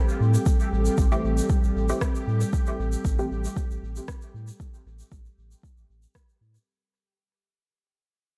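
Cavernous and hypnotic, this short dub techno excerpt moves at 116 BPM in 4/4 with a light swing on the sixteenths, resting on a single Am7 chord in A minor while the whole passage fades out. A dark analog pad holds sustained, detuned chords with a slow attack, long release and chorus, breathing under sidechain pumping, while a bubbling stepped-filter texture adds a bright, resonant sawtooth shimmer with its own reverb. Up front, a round sine sub bass pumps alongside an overdriven electronic kick drum that enters at 0.5 seconds, and a grainy acoustic egg shaker trails dub echo through the groove. A muted, filter-plucked chord stab with phaser, chorus and echo appears from 1.1 to 3.4 seconds, and an overdriven electronic rim click joins at 2.0 seconds, tucked in the background. The echo-heavy mix sits in light reverb with a veil of vinyl crackle.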